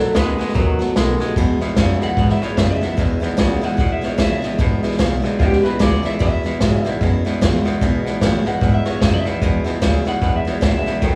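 Rowdy, rollicking rockabilly excerpt at 149 BPM in E major with a swung feel, where a slightly broken-up, lo-fi electric guitar through a small old amp carries the melody over a full-bodied picked steel-string acoustic guitar, a clean, compressed twangy electric guitar riff, a woody, thumpy pizzicato upright bass on gut strings and an up-front vintage drum kit with a punchy kick and rolled-off top, the band sounding live in one room with a moderate large studio reverb as a B7 chord gives way to E at 1.4 seconds.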